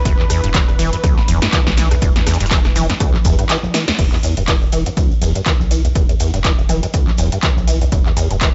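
Acid house at 122 BPM in E minor with a swung 16th feel, raw and driving, this cut from a longer piece opens on a drop where a lush, detuned unison pad with chorus and phaser pumps in the background over a round, nasal analog bass and an up-front, rubbery acid bass riff with a resonant filter sweep, saturation and tape echo. A punchy electronic kick leads the drums, joined by an electro analog drum machine with metallic hats, congas, handclaps and rim clicks, a very quiet, gritty sampler-style soul kit and a grainy, distant shekere. A drum fill at 3.7 seconds and a band accent at 3.9 seconds mark the pad's exit at 4.0 seconds, leaving a dry, lo-fi hardware sound with cassette tape dullness.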